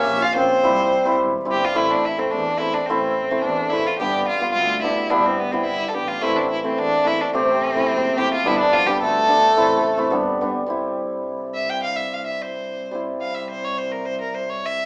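A rich, smooth violin carries the melody from start to finish, played by one bowed player with light vibrato and sitting up front in the mix. This is a soulful, bittersweet klezmer piece in 2/4 at 107 BPM with a straight feel, moving from A minor to C major at 10.7 seconds. A hammered dulcimer, acoustic and shimmering, rings out its accompaniment up front throughout, while a bowed double bass adds a focused, close low line with its own vibrato. A reedy, dark accordion with plate reverb plays a second line, appearing briefly at the opening and returning between 6.2 and 10.1 seconds. The sound is a rough home demo mix with a small-speaker quality and a wet studio reverb, and the recording is cut from a longer piece.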